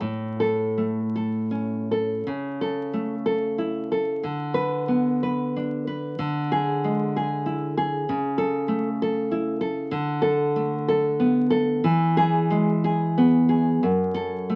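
A romantic solo classical guitar piece in A major, sunny and warm in a rubato 3/4 at 78-98 BPM, features a full-bodied, fingerpicked nylon-string guitar placed up front with light reverb, its deep tone wrapped in the crackle of a very old 78 rpm record across this 14.6-second cut from a longer work.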